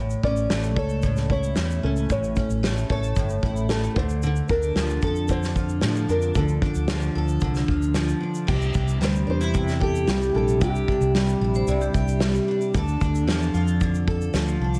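A double-tracked, picked steel-string acoustic guitar sits up front in this sunny, heartfelt acoustic pop excerpt, carrying the accompaniment with a warm, amped fretless electric bass and an unplugged drum kit played with bundle sticks, its punchy kick, medium-tuned snare, shaker and dark crash cymbal close at hand. Over chords moving from A to Dm to Cadd9, a thumb-plucked nylon-string guitar with a small, dusky tone carries the melody until 11.1 seconds, and a vibraphone struck with hard mallets, motor off, adds a brief ringing, metallic second line from 11.6 seconds. The music sits in a small room ambience.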